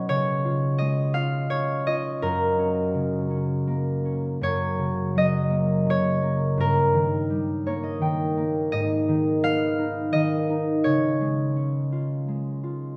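Bathed in a moderate scoring-stage reverb, this tender, gentle lullaby fragment in F# major drifts at a rubato 84 BPM in 3/4, with two up-front concert harps: one fingerpicks a warm melody in the upper middle register while the other plucks a thumb-played, ringing accompaniment spanning low to high; a harp fill arrives at 7.3 seconds as the chords move from C# through F#, D#/G and G#m back to C#.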